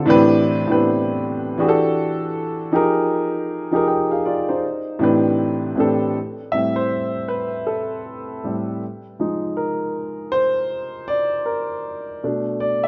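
A rough home demo with a lush hall reverb frames this soulful, smooth R&B excerpt at 79 BPM in 4/4 with a swung sixteenth-note feel, where a warm, natural grand piano sits up front alone, ranging from A2 to G5 across minor eleventh chords like Am11, Em11 and Fm11 before settling into Am7, Fm7 and Bm7 for its solo from 6.2 to 12.9 seconds.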